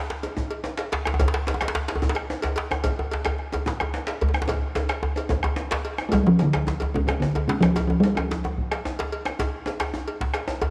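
A driving 12/8 pulse at 146 BPM carries this earthy West African drum ensemble piece in F major pentatonic, with a deep, dark bombo in the background, a dry metallic cowbell, a band-limited, vintage-sounding djembe with metal rattles played with hard hands, and a tight, cracking djembe up front, set in a moderate echo-chamber reverb. A drum fill from 4.5 s then leads to a resonant talking drum that steps forward with a melody from 6.1 s to 8.6 s.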